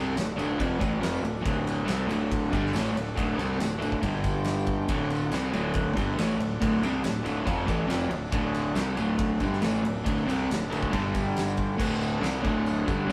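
Garage rock in D mixolydian, this swaggering, rowdy excerpt from a longer piece drives along at 139 BPM in a straight 4/4, the band playing live in one room with a moderate stone room reverb around them. Up front, a crunchy, double-tracked overdriven guitar picks out a bright riff with a touch of spring reverb, while a fuzz-laden fingered electric bass growls underneath in the background. An oversized, low-tuned drum kit pumps the room with a boomy kick, fat snare and dark, gritty cymbals, joined by a jingly, band-limited tambourine mixed very quiet. A vintage combo organ holds mellow, clean sustained chords with light vibrato, sitting very quiet behind the rest. The harmony rocks between D and G5, and a transistor combo organ fill at 10.9 seconds leads into a new section at 11.8 seconds that lands back on D.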